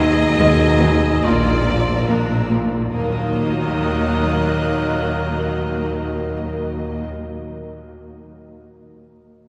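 At a slow 71 BPM in a straight 4/4, this ominous, mysterious suspense film-score excerpt in Eb minor sets a lush, expressive violin melody over a mellow distant clarinet and a background violin second line, with accompanying violas and with dark French horns, a glassy glass harmonica and very quiet trombones holding sustained chords, while a brief cello riff stops at 2.8 seconds, dark cellos with portamento and double basses carry the bass, high distant violins add texture, and a barely audible clear piano appears at 0.4 seconds, all moving from Abm/Eb through Bb to Ebm in a cavernous cathedral reverb heard from further back in the room.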